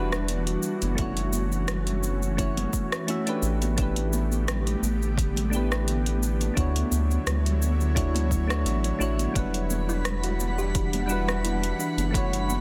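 A round, deep analog bass sits up front in this smooth, relaxed sunset chillout piece, beneath soft electric-piano-like synth keys with chorus and delay and an ethereal, airy pad of detuned sustained chords. A punchy electronic kick arrives at 1.0 seconds alongside a deep house kit of cabasa, dark hats and rim click, while bright, distant congas sit in the background over a lightly swung sixteenth-note feel. A buzzing, woody kalimba plays delayed arpeggios from 9.4 seconds and a twinkling granular shimmer joins at 9.8 seconds, and the whole is finished with light reverb and a dense, heavily limited modern master.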